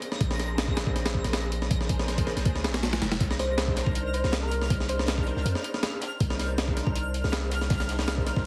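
A straight 160 BPM drum and bass groove in C minor drives this atmospheric, raw jungle excerpt, led by an up-front, gritty sampler-style break with a thumpy kick and high-tuned snare, while a very quiet, dark and saturated second break joins at 3.2 seconds. Underneath, a deep, long 808-style sine bass holds sustained notes, a silky string machine with phaser, ensemble chorus and 12-bit grit sits in the background over a move from Bb9 to Cm9, and a bright, twinkling granular shimmer sparkles high above. At 3.4 seconds a round, keys-like FM lead with chorus, vibrato and dub echo plays a brief phrase, and the whole mix carries a heavily compressed radio sound with light reverb and vinyl crackle.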